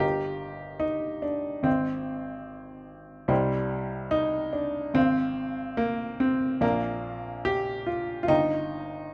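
This classical, romantic character piece for solo piano carries a passionate yet hopeful mood, moving at 72 BPM in 4/4 with a flexible, rubato feel in Eb major. A warm baby grand piano plays alone from start to finish across 9.1 seconds, spanning from G1 up to Bb5. Its tone is intimate and natural, with a short sustain and audible action noise, and the instrument sits up front. The harmony unfolds from Eb/G through Abmaj7, Cm, Fm/Ab and Bb before settling back on Eb/G at 8.3 seconds. Close, detailed microphones and light reverb frame the sound, and the passage is cut from a longer piece.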